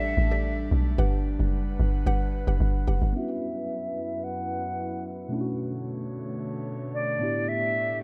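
Amapiano at 111 BPM with a soulful, hypnotic pull, this short cut from a longer piece opens on a drop where a deep, round log drum bass and a woody, mallet-like synth pluck with chorus, phaser and tape echo sound under a reedy, close-miked concert flute melody with vibrato and an airy, breathy pad, before both drop out at 3.1 seconds and a worn, slightly out-of-tune tine electric piano takes over the accompaniment beneath a filter sweep, all in a rough home demo mix with light digital reverb.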